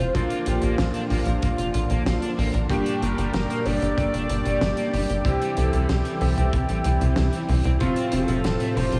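An uplifting, nostalgic synthwave excerpt at 94 BPM opens at once with a thick, detuned unison sawtooth lead carrying the melody through analog delay, a bold brassy analog pad with chorus and sidechain pumping, and a punchy, nasal sequencer bass that drives from the front of the mix, while a crunchy overdriven guitar riff and clangy vintage electric grand piano stabs sit farther back. A tight, dry acoustic kick joins at 0.1 seconds and a damped 70s kit with hi-hat and a fat snare at 0.2 seconds, both touched by studio reverb. The chords move through Bb, Gm, C and F, and the whole mix is soaked in a dreamy hall reverb.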